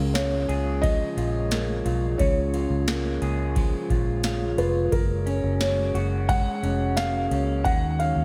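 Ethereal and haunting, this dream pop excerpt moves at 88 BPM in a straight 4/4, drifting through Db6, Gbadd9 and Ebm7 chords. A felt-muted upright piano carries the melody with a soft, boxy, intimate tone, its notes trailed by delay and slapback echo. Beneath it, a glass harmonica holds glassy, slow-attack chords, while an electric guitar through a small old amp plays slightly broken-up arpeggios bathed in lush chorus, delay and slapback echo. A dark, round, foam-muted electric bass sits up front alongside a booming analog drum machine with a deep kick, crisp snare, ride cymbal and tambourine, entering at 0.1 seconds. A very quiet FM synth bell adds a gentle, decaying shimmer from 0.2 to 5.2 seconds, and the whole mix is set in a concert-hall reverb that gives it a big arena sound.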